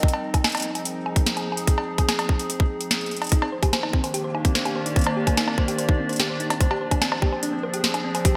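Cerebral and eerie, this short IDM excerpt at 146 BPM sets a warbling, detuned tape-like pad holding Fm7, Ebmaj7 and Dm7b5 chords against a tight, up-front electronic kick and a booming analog drum machine with crisp snare, metallic hats, bongos and cowbell in gated reverb and delay, while a round, tine-like thumb-piano synth pluck enters with chorused, delayed arpeggios at 3.3 seconds, all inside a lush digital hall and bright 1980s-style production.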